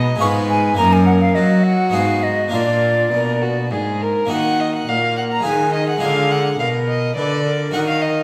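An airy wooden flute carries the tongued, vibrato-tinged melody from 0.2 s over a reedy, period-style gut-string violin second line, a rich bowed cello bass and a brilliant, close-miked harpsichord in this grave yet flowing baroque-style sonata fragment in Eb minor at 105 BPM in 3/4, set in a wet recital hall reverb.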